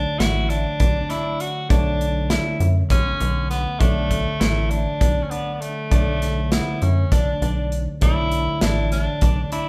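A clear tenor saxophone opens this tense, brooding excerpt of progressive instrumental band music in 7/8, carrying the melody in a vintage pop style with scooped notes over a barky tine electric piano and a rubbery square-wave bass. The electric piano sits in the background, bright and lightly overdriven through a combo amp, while the bass has a hollow, bouncy character with a resonant filter pluck, a fast attack and a sustained, dark low end. At 0.2 seconds a clean, picked electric guitar joins with dark arpeggios, along with an acoustic studio drum kit of hi-hat, medium-tuned snare and punchy kick placed up front. The feel stays straight across the uneven metre. The whole band sounds as if it is playing live in one room, bathed in a large, wet studio reverb.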